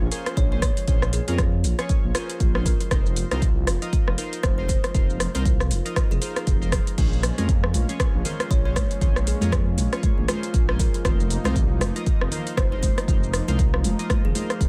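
Afro house at 118 BPM in Bb minor, this short excerpt carries a warm, spiritual mood over a swung 4/4 groove that moves between Bbm9 and F7sus4. A deep electronic kick sits up front beside a dark, detuned sawtooth bass that rumbles with tube saturation and sidechain pumping, while an afro-pop drum kit adds metallic hats, rim clicks, shaker and crash. Round analog keys play bright, decaying stabs through chorus and delay, and in the background a ringing, meditative handpan traces arpeggios as a woody kalimba carries a plucked melody, both echoing with delay. At 7.0 seconds a smooth, detuned analog pad enters with sustained chords shaped by chorus and tremolo, and congas from a small room join softly in the background. The mix sits in a digital ambience that gives the whole groove a spacious, hypnotic glow.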